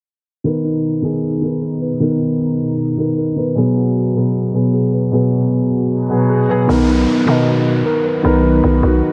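A dark, warm mix soaked in a huge ambient reverb opens this short hip hop excerpt, which moves at 154 BPM in 4/4 with a half-time feel in B major, its mood both triumphant and wistful. Up front, a felt-muted upright piano carries the accompaniment with a soft, intimate tone and audible action noise, while a mellow tine electric piano spins clean arpeggios through subtle chorus and tape echo. Behind them, an airy, breathy pad holds sustained chords with a slow attack and long release, colored by chorus and phaser. A filter sweep runs from 0.5 to 6.7 seconds as the harmony moves between Bmaj7 and G#m7/B. At 6.7 seconds a growling, buzzy 808-style bass arrives with a fast attack and decaying notes, joined by an electronic downlifter as the music returns to Bmaj7.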